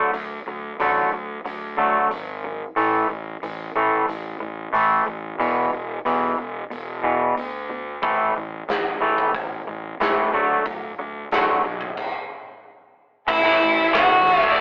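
A twangy, dark electric guitar sits up front, playing clean fingered arpeggios through the opening of this anthemic, bittersweet quiet-loud alternative rock excerpt in a straight 4/4. Beneath it a punchy, overdriven fuzz bass and a big acoustic rock kit with bright cymbals, a medium-tuned snare and a punchy kick carry the first section over chords moving from D through A5 and E5 and back. The guitar falls away at 11.9 seconds, and a stop follows from 12.0 seconds before the louder section breaks in at 13.3 seconds on A5. There a nasal, overdriven lead guitar with a parked wah takes the melody up front, backed by a riffing cranked stack guitar in the background, a very quiet, bright fuzz guitar also playing a riff, and a veiled, muted chamber string section holding soft-edged sustained chords with vibrato. The whole thing has a rough rehearsal-room character with a telephone-like sound and a moderate small-room reverb.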